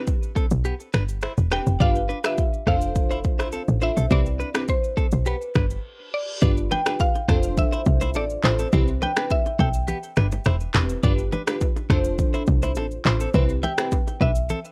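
Afrobeats in a joyful, breezy mood, this short cut from a longer piece moves with a straight four-count feel over a cycling Cmaj7, G7, F6 progression. Up front, an electronic afro-pop kit with a deep kick, finger snaps, handclaps, rim clicks and shaker drives the groove, while a punchy, woody log drum bass with a fast, decaying attack holds down the low end. Glassy, detuned digital keys with chorus and a filter sweep supply the accompaniment, and a bright, twangy clean electric guitar, recorded direct and compressed, picks a riff through a delay. From 1.5 seconds a round, mellow mallet-like synth pluck carries the melody with chorus and delay. After a brief break at 5.8 seconds topped by an electronic reverse cymbal, hard-handed congas and bongos, close and dry, join at 6.4 seconds, and the whole mix sits in light reverb with the worn, warbling pitch drift of old cassette tape.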